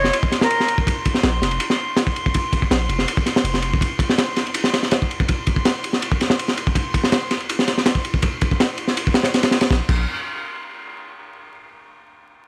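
A crunchy jungle breakbeat drives this atmospheric, nostalgic drum and bass excerpt in a straight four, with a tight kick, a high-tuned snare and crash and ride cymbals sitting up front, saturated and gritty with a rolled-off top. A breathy, reedy jazz flute opens with a brief, crisp-attacked phrase trailed by a dub echo. Underneath, a deep 808-style bass holds long, mellow sine notes warmed by tube saturation over a rootless Bbsus2 until the harmony falls away at 3.8 seconds, then returns for a short moment near the close. In the background, a glassy texture of drifting overtones floats high and calm through chorus and reverb until 9.7 seconds. The drums carry on to the 10-second mark. Vinyl crackle and the dry hardware grit give the whole piece a dusty, vintage feel.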